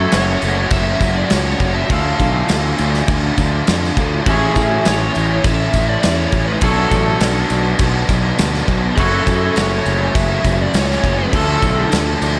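Wistful and hazy, this short shoegaze and dream pop rock cut at 102 BPM drifts through a hall-reverb-soaked mix as a biting, delayed lead guitar sings a melody over a crunchy chorused rhythm guitar, a twangy clean guitar with reverse reverb tucked in the background, an up-front growly fuzz bass, a loose indie drum kit with a tight kick and pumping room sound, and a very quiet jingly tambourine, all moving through chords from F#m7 to Dm.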